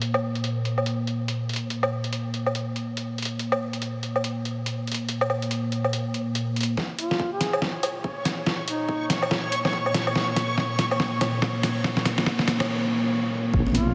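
A dark, lush analog pad and a muffled, pitched-down sampler-style drum kit of hi-hat, snare and woodblock open this heavy, cavernous deep dubstep excerpt in Bb minor at 142 BPM, with a swung half-time feel, all soaked in huge ambient reverb and vinyl crackle. At 6.8 seconds a build-up begins as the chord moves to Bbm: a deep, tape-touched electronic kick enters in the background, a reversed granular texture swells above, and a drum fill runs. Moments later, at 7.0 seconds, a mellow, scooped duduk sings briefly through dub echo under a filter sweep. In the final moments, a detuned, wobbling sub bass lands up front, joined by a brief touch of bright, distant congas.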